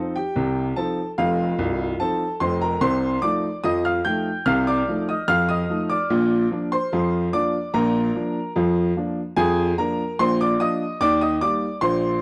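Set in a straight 2/4 at 73 BPM in B-flat major, this cheerful, lively fragment of ragtime has a solo baby grand piano, clear and boxy with long sustain and placed up front, ranging from a deep C1 in the bass up to G6 in the treble over chords moving from F7 to Bb and on to Eb, all captured in a dry, close 1970s-style studio with a touch of reverb.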